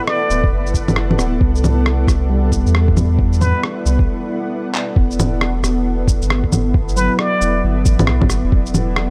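Future garage at 135 BPM in E minor, melancholic and nocturnal, cut from a longer piece: a cloudy, evolving granular pad and a deep, round dub sub bass pump under swung drums, with a pitched-down, muffled kit of electronic rim click, shaker, bongos, handclaps and cabasa up front over a thumpy kick. A plunger-muted trumpet with a bright wah-wah tone and analog delay drops in short jazz phrases at 0.0, 3.4 and 7.0 seconds, while a reversed, dreamy swelling texture hovers very quietly in the opening seconds. A worn, slightly out-of-tune tine electric piano sits in the background under a filter sweep before a brief break and drum fill lead into an Em11 chord at 5.0 seconds.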